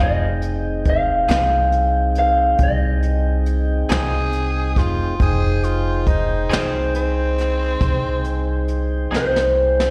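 This slow blues in 12/8 and F minor is brooding and mournful, moving at 46 beats per minute with a straight feel over an Fm7 chord, cut from a longer piece. Up front, an electric guitar through a small old amp carries the melody between C5 and F5, its picked tone slightly broken-up, compressed and lo-fi, with slapback echo. A second electric guitar, fingered and twangy with tremolo and slapback echo, plays accompaniment lower in the mix until 9.4 s, while a mellow tonewheel organ holds soft, flute-like chords with key click through a slow rotary speaker. A woody, dark upright bass played pizzicato sits prominently beneath, and a brushed jazz kit enters at 0.4 s with a boomy kick and smooth snare, closing on a drum fill. From 3.9 s a raspy, growling tenor saxophone adds a gritty second line with vibrato, and the band sounds like a live gig heard through the venue's PA, with recital hall reverb and small room ambience.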